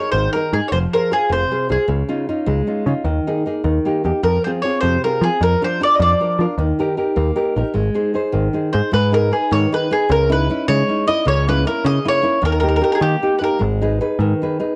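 Italian folk in the manner of a serenade, this romantic, sunny passage cut from a longer piece moves in a straight 6/8. A nylon-string guitar carries the accompaniment throughout, fingerpicked with a full-bodied, deep classical tone and the occasional finger squeak. Beneath it, a picked electric bass adds a direct, warm foundation. The mandolin takes the melody in short, recurring phrases, its picked double strings giving a woody shimmer, before settling into a longer line from 8.7 s, just ahead of the second section at 8.9 s. All three parts sit up front in a small, moderately reverberant room, while the guitar and mandolin also carry plate reverb and cassette coloring. The whole recording has the soft, rolled-off top of a home cassette, lending it an intimate, slightly hazy glow.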